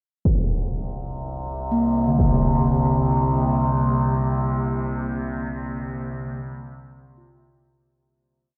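Dark and desolate, this short dark ambient drone piece floats in free time, opening at 0.3 seconds with a huge, muffled impact, joined at 0.7 seconds by a resonant, sawtooth-and-sine drone whose moving overtones evolve under chorus and its own reverb. A close-miked bronze singing bowl enters at 1.7 seconds, its metallic, slowly beating ring struck with a suede striker and traced in arpeggios through tape echo as three slow loops of unequal length drift against each other. The harmony moves from Bbadd9/C to C9sus4 at 4.1 seconds as a fade-out begins, all set in a huge reverberant space with a dark production.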